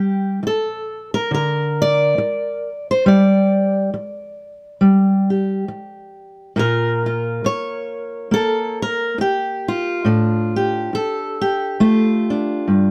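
Close, detailed microphones and light reverb frame a solo fingerpicked steel-string acoustic guitar, dark-toned and up front, in this short folk excerpt. At a gently swung, unhurried pace in 4/4, the guitar ranges from G2 to D5, opening on Gm before a chordless passage, then turning to Bbm at 6.6 seconds and settling on F6/A at 10.1 seconds. The mood is hopeful and peaceful.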